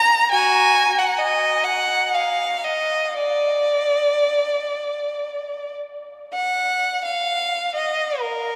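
A rich, focused solo violin, bowed with vibrato by one player and set up front, sings a yearning, mournful line between Gb4 and Bb5 in a free, expressive classical passage in 3/4 with rubato at 48-67 BPM, its tone blooming into the wet reverb of a vast, echoing cathedral across this 8.6-second fragment cut from a longer piece, shifting to a new section at 6.3 seconds.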